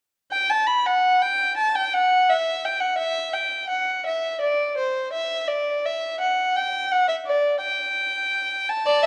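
Set in 12/8 at 56 dotted-quarter beats per minute with a straight feel, this short passage cut from a longer piece is a lively, joyful baroque-style fugue in G major, tuned to A4 = 439 Hz. A single bowed violin carries the melody from 0.3 s, singing between C5 and B5 with a warm, even vibrato and a smooth top end, placed up front. At 8.9 s a second violin enters on its own line, spanning D5 to E5 and sounding slightly stronger than the first. Its bowing is expressive, gliding between notes with portamento. A moderate recital-hall reverb of about 1.5 seconds surrounds both players.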